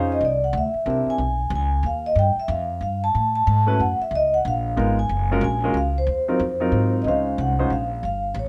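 A swung waltz pulse in three drives this brief, cool jazz fragment, with the eighth notes leaning into a relaxed lilt. Upright bass plays pizzicato throughout, its gut strings giving a woody, thumpy low end that sits up front. Vibraphone with medium mallets carries the melody in a high register, its metallic, ringing tone shimmering with a fast motor vibrato and an airy finish. A polished baby grand piano supplies present, warm accompaniment, dropping out at 1.2 seconds and returning at 3.7 seconds. The harmony moves through rich extended chords before a new section arrives at 7.1 seconds on a minor eleventh, all set in a light reverb.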